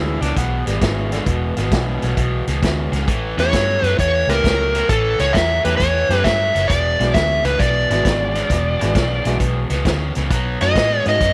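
A dark, overdriven slide guitar sits up front with the melody from 3.4 seconds in this gritty, swaggering electric blues shuffle in E mixolydian at 133 BPM, moving through E7, A7 and B7. Before it arrives, a breathy tenor saxophone with light vibrato and scooped notes plays a mellow, jazz-style second line that ends at 2.9 seconds. Meanwhile, a bright, picked semi-hollow guitar drives an overdriven riff over a round, foam-muted fingered bass. A vintage drum kit with a punchy kick and rolled-off top joins at 0.2 seconds, and a worn baby grand piano with long sustain stays in the background, in a small room with light reverb.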